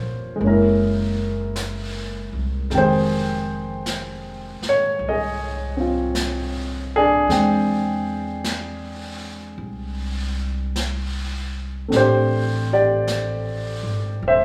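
Smoky and intimate, this slow swung jazz ballad excerpt, cut from a longer piece, sets an up-front, natural-toned baby grand piano over woody, thumpy pizzicato upright bass on gut strings, with a brushed drum kit of snare and hi-hat entering at 0.4 seconds, all wrapped in the moderate reverb of a recital hall as the harmony drifts from Gb9 through Fm9 and E7alt to Am7 at 11.9 seconds.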